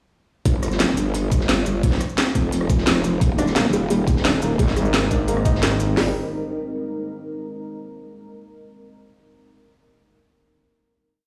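A growling, wobbling sine bass sits up front from 0.5 seconds. Its saturated, compressed tone shifts through modulated phrases with changing wobble speed. This whole piece is dark technical drum and bass at 174 BPM in G Phrygian, futuristic and tense, with the drop running to 6.0 seconds before a final chord. Two layered electronic kits drive it with a knocking kick, cracking snare, crisp hats, rim, shaker and a broken-beat pattern, while a gritty acoustic breakbeat loop with edits and a rolled-off top sits in the background. A soft, felt-muted upright piano with audible action noise enters at 3.4 seconds, its 5-step arpeggio loop drifting against the bar through dub echo and sidechain pumping. A deep, evolving pad of detuned sawtooth voices with chorus and built-in reverb comes in on a slow attack at 4.2 seconds. Then a thick FM bass adds chopped phrases at 4.6 seconds, answering the growl bass, over chords moving from Eb to Abadd9 and resting on Gm. 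The sound carries large studio reverb, as if played on a big sound system in a bare room.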